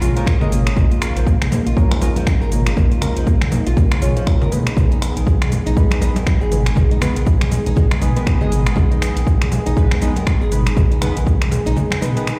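This afro house excerpt opens at once on a smooth, detuned sawtooth pad holding chords in the background, fingerpicked flamenco guitar arpeggios with delay, chorused analog key stabs with a filter sweep, a round sine sub bass, and a deep house kit of cabasa, finger snaps, metallic hats and toms. A deep, overdriven electronic kick arrives up front at 0.3 s, and bright, hard-handed congas with a thin, vintage, band-limited tone follow from the background at 0.4 s. At 120 BPM in 4/4 with 58% swing on the sixteenths, the groove feels warm and driving, and sidechain pumping breathes through the pad, guitar, keys and bass. The harmony moves from Bbm7 to Abm at 4.8 s. The kick and kit carry overdrive and a large-room character, while the mellow, sustained bass gives the short clip a full, club-ready weight.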